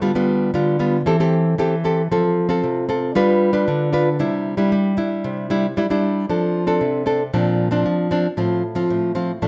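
A moderate large-studio reverb surrounds this joyful, festive samba at 115 BPM, cut from a longer piece and played by a single nylon-string guitar. The fingerpicked guitar sits up front with a bright, small acoustic tone and a slapback echo, moving through chords from G7/D and C6/E toward Cadd9 in C major. At 6.3 s the music shifts to F major, with F6 and Bbadd9 colouring the closing bars before settling on F/A.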